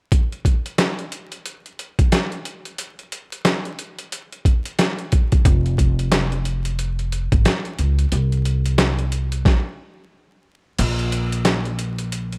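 Dry and dusted with vinyl crackle, this reflective, moody boom-bap hip-hop excerpt in F minor moves at 90 BPM with a swung 16th feel, its gritty, compressed sampler-style kit of thumpy kick, medium-tuned snare, hi-hat and crash sitting up front, joined at 5.5 seconds by a woody pizzicato upright bass, before a stop at 9.5 seconds gives way to a closing passage from 10.8 seconds where the kick falls silent.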